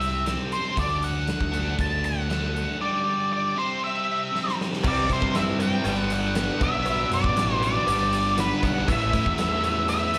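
Heard through a live club PA with light reverb, this confident, swaggering classic rock excerpt at 118 BPM pairs a dark, up-front octave-fuzz lead guitar melody with a biting overdriven riff guitar, a growling overdriven bass and a huge arena kit with punchy kick and bright cymbals, whose drum fill at 4.3 seconds ushers in a cranked stack guitar and a metallic cowbell in the background from 4.8 seconds.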